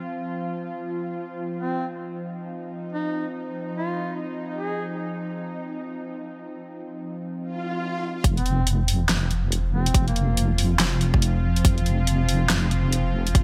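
Heavy and brooding, this deep dubstep passage, cut from a longer piece, moves in a swung half-time feel. A tense, string-like drone holds sustained chords from the start, its detuned sawtooth tone carrying vibrato and its own reverb. A warm, close-miked duduk sings a folk-style solo melody with scooped notes and vibrato, coloured by vintage 12-bit sampler grit and dub echo, entering at 1.6 seconds and returning later. An electronic swell at 7.5 seconds leads into the drop at 8.2 seconds, where a deep, dark wobble bass with chorus arrives up front alongside a tight, layered electronic kick and a dubstep kit with a huge snare and low-passed hats under gated reverb. The mix sits in a lush hall reverb with a bright 1980s-style digital sheen.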